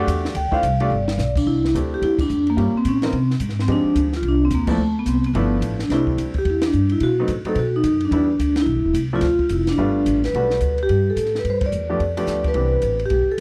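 Relaxed and swinging, this small-group jazz passage, cut from a longer piece, puts a ringing, metallic vibraphone up front on the melody, its slow motor vibrato shimmering over an intimate upright piano whose clear, short-sustained chords carry audible action noise until it stops at 13.0 seconds. A woody pizzicato upright bass sits up front beside it, while a compact cocktail kit with dark cymbals, a high-tuned snare and a punchy kick adds a fill at 0.9 seconds and joins the band in accents such as the one at 2.2 seconds. The sound is dry and close, in the manner of a 1970s studio session, with rich jazz harmony shifting to a new tonal centre for the final stretch.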